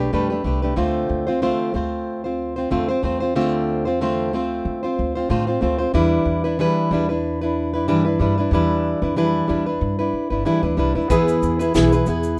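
A light reverb gives this short acoustic pop passage a gentle sense of space, with a wistful, tender mood at 93 BPM in 4/4 and a soft swing on the sixteenths. Up front, a full-bodied jumbo steel-string guitar is fingerpicked throughout, its tone warm and close as it moves from Gadd9 to Dm7 and then to Em7. Beneath it, a pizzicato upright bass with gut strings adds a woody, thumpy low end that sits darker in the mix. At 11.1 seconds the harmony shifts to E, and a soft brush kit enters with a fat snare, a tight kick and a shaker, heard naturally in a studio room. At the same moment, a polished concert grand piano joins in the background, its clear, short-sustained notes adding a present touch before the passage is cut off at 12.4 seconds.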